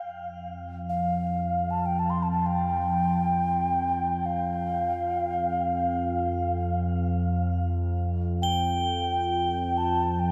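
An airy clay alto ocarina with vibrato and a soft attack carries the melody from 0.9 s, sent through shimmer reverb and delay, in this spacious, calm world meditation piece in free time and F major pentatonic, floating over an evolving, nasal analog drone on F2 that enters at 0.3 s with chorus and phaser, while bright, bell-like crotales ring at the opening and again from 8.4 s inside a vast, echoing space, in a fragment cut from a longer piece.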